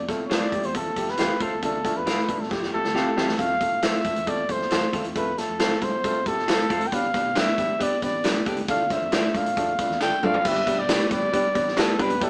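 The recording has the small-speaker sound of a band playing live together in a stone room with moderate reverb. It is a joyful, uplifting slice of uptempo 1960s-style soul in a straight four, cut from a longer piece. A breathy trumpet with light vibrato carries the melody up front in a jazz style, while an acoustic drum kit with a punchy kick and a medium-tuned snare drives the band and adds fills at 2.5 and 10.0 seconds. Underneath, a round, foam-muted fingered electric bass sits in the background, a mellow upright piano with woody tone, audible action noise and slight detuning fills out the harmony, and a clean, picked electric guitar adds dark stabs. Very quiet tambourine and handclaps join at 3.4 seconds as the chords move from F and D minor toward G.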